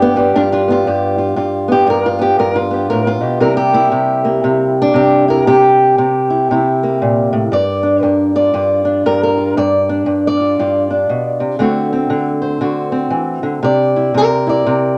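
A fingerpicked old ladder-braced acoustic guitar carries this laid-back, soulful acoustic country blues alone, its dark, woody, boxy tone and old strings sitting up front in a wet studio ambience. At 118 BPM in 4/4 with a swung eighth-note feel, it moves through a dominant-seventh blues progression from G7 to C7 and D7, ranging from G2 up to D5. This 15-second passage is cut from a longer piece.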